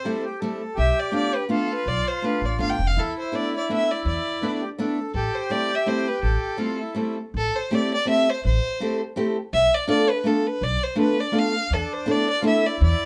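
A bowed violin with vibrato and a reedy, dark accordion open this bittersweet, whirling musette waltz together, soon joined by picked steel-string acoustic guitar and, at 0.8 seconds, a woody pizzicato upright bass. Set in A minor in 3/4 at 165 BPM, the tune has a swung, rubato lilt, with chords moving through Am7, Bm7b5 and E7sus4. The single violin carries the melody up front with a smooth, even tone and a smooth top, while the accordion's full, rich second line sits lower in the mix before dropping out at 7.1 seconds and returning at 11.7. The guitar's auditorium-toned accompaniment and the bass, both close and present, give the groove an acoustic, woody foundation. The band plays live in one small room with moderate reverb, and this short passage is cut from a longer piece.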